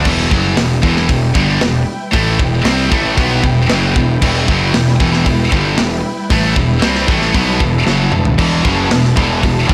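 A bright, high-gain guitar riff leads this relentless heavy metal excerpt in E minor at 115 BPM, set up front beside a tight, gritty drum kit with a saturated snare and kick, which plays a fill at 7.9 seconds. Behind them, a sludgy overdriven guitar adds its own riff, a growly fuzz bass sits low, and lush bowed symphonic strings hold sustained chords with vibrato. A double-tracked distorted guitar flickers at the start and returns at 8.4 seconds, all within a small, blown-out room sound.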